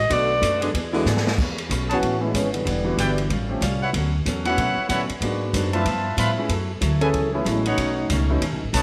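Recorded with a moderate echo-chamber reverb and small-room ambience, this short cut from a longer big band swing piece sounds energetic and brassy. A warm, up-front clarinet with light vibrato opens with a brief phrase over a woody, thumpy pizzicato upright bass on gut strings, while a clear, close-miked saxophone section holds sustained chords until 1.4 seconds and a drum fill closes that opening. The swinging drum kit, with its punchy kick, medium-tuned snare, hi-hat, ride and crash, keeps going throughout alongside a picked steel-string acoustic guitar whose finger squeak comes through, and an intimate baby grand piano with audible action noise comps from 0.9 seconds. From 1.4 seconds the trombone section takes the solo, its warm, jazz-style playing with light vibrato heard in two passages, as a clear trumpet section with a smooth top and slapback echo punches out stabs. The harmony moves through rich jazz colors such as Amaj9, Dmaj13, G13 and F#m11, ending the passage on B9.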